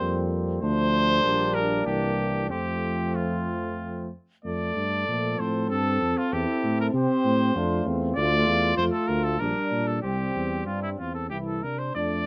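A warm, triumphant classical passage for brass quintet, cut from a longer piece, moves in an unhurried three-beat metre with a flexible, rubato feel. The bright trumpet carries the melody up front with a soft attack and a vintage tone, while the flugelhorn adds a distant, roomy second line in the background. Beneath them, the French horn supplies smooth-topped accompaniment and the close-miked trombone adds a light vibrato, both set back in the mix. The mellow tuba anchors the bass up front with its own light vibrato. The harmony circles through F, D minor, G minor and C seventh chords, and a second section begins at 4.4 seconds, settling onto a C chord by 11.3 seconds. Close, detailed microphones and light reverb keep the ensemble intimate and clear.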